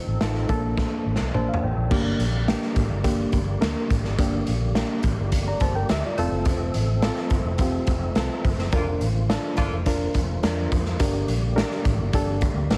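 A clean, fat tonewheel organ with key click and percussion opens this joyful, upbeat 1960s-style soul piece, holding sustained chords in the background through a slow rotary speaker and chorus vibrato. Almost at once a dark, foam-muted fingered bass and a raw garage drum kit join in. The kit sits up front with a punchy kick, a medium-tuned snare and a gritty, saturated edge, while a reedy, worn electric piano, slightly out of tune and heard through its built-in speakers, fills out the accompaniment. Drums and electric piano both play fills that lead at 1.9 seconds into a straight 4/4 passage moving from Gm to F. At 8.7 seconds the band hits an accent on Bb/F, and a distant, roomy horn section with light vibrato adds a brief second line before the music returns to Gm. The mix is dry and heavily compressed, with a warm, radio-like sound.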